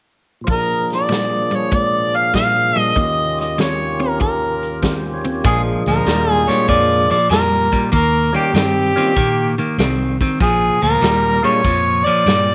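Laid-back and swaggering, this electric blues shuffle swings at 97 BPM in Bb mixolydian, cut from a longer piece and moving between Bb7 and Eb7. An up-front, overdriven harmonica carries the melody with light vibrato and scooped notes in a jazz style, over a slightly broken-up, picked electric guitar riff, a fat percussive tonewheel organ turning through a slow rotary speaker, and a swinging big-band drum kit with a punchy kick and medium-tuned snare. A dark, round, foam-muted fingered bass enters at 5.4 seconds, and the organ drops out at 11.6 seconds, all set in moderate spring reverb and small room ambience.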